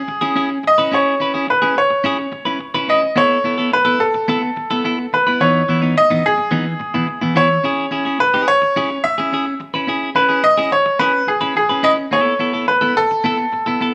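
Celebratory and glamorous, this disco excerpt moves at 107 BPM in a straight 4/4 feel, set in E major. A clear baby grand piano carries the melody from the opening moment, its natural, short-sustained tone sitting up front in a range from G#4 to E5. Alongside it, a clean electric guitar, also up front though slightly quieter, provides accompaniment from 0.1 seconds, its bright, twangy, scooped character shaped by compression and picked attack, spanning E3 to B4. The harmony cycles through E6, B7sus4 and C#m9 before returning to E6 and then B7sus4 at 12.1 seconds. Light reverb and a small room ambience frame the pair closely, and the whole fragment runs to 13.9 seconds as a single section cut from a longer piece.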